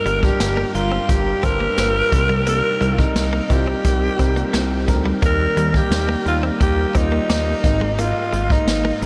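At 87 BPM in a straight 4/4, this short cut from a longer 1980s-style pop piece moves with a romantic, glossy ease over chords of Gm7, Cm7, Eb and Absus2. A vintage brush drum kit sets the pulse with hi-hat, a punchy kick and a medium-tuned snare played with brushes, its acoustic studio-room tone mid-forward and rolled off at the top. Beneath it, a fat analog bass built from detuned, saturated sawtooth sounds with a filter pluck gives a thick, evolving low end from G1 to Eb2. A bell-like tine electric piano with subtle chorus sits bright and clean in the background, while a direct-recorded electric guitar picks a compressed, very quiet riff. Up front, a raspy alto saxophone carries the solo melody between Eb4 and Bb4 with gritty vibrato and an analog delay trailing its phrases. A huge ambient reverb soaks the whole mix in a dreamy haze for the full 9.1 seconds.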